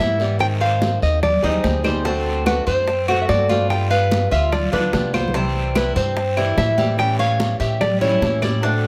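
The recording has a light reverb over a relaxed, sunny excerpt of Latin music in the Cuban son and guajira style, in a straight 4/4. A fingerpicked nylon-string guitar carries the melody with a classical tone set in plate reverb, while an old ladder-braced guitar, boxy with aged strings, fingerpicks the accompaniment beneath it. A Cuban tres adds picked arpeggios with a metallic ring and doubled strings, and an up-front upright bass plays pizzicato with a dark, thumpy gut-string sound. Distant, high-tuned congas played with soft hands are the most prominent of the percussion, with tight, dry bongos, woody claves and a raspy guiro in the background, and a drum fill arrives at 5.1 seconds. The chords move from Abmaj7 through D7, G7 and C to A7.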